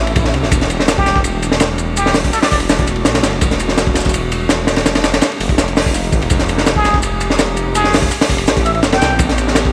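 A background electronic swell rises over a warbling, lo-fi pad with chorus and built-in reverb and a thick, detuned sawtooth bass that sounds menacing and beating, as this frenetic, nostalgic drum and bass and jungle cut opens at 166 BPM, moving through minor eleventh chords. A crunchy, saturated breakbeat kit sits up front with a punchy kick and high-tuned snare, while a dusty, overdriven sampler-style kit with shaker and filtered hats stays in the background. A clear, jazz-style plunger-muted trumpet solo with light vibrato, sampler grit and dub echo enters at 1.0 s and returns at 6.8 s, all over a bed of studio ambience and vinyl crackle.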